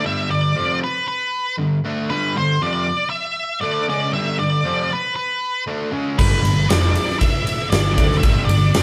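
Captured live in one room with a moderate stone-room reverb, this bittersweet, cathartic quiet-loud alternative rock fragment in G major at 117 BPM opens with a dark octave-fuzz lead guitar melody up front over a double-tracked, compressed fuzz guitar riff; at 6.2 s a growly, overdriven picked electric bass joins in the background and a huge arena drum kit arrives with bright cymbals, a fat snare and a punchy kick.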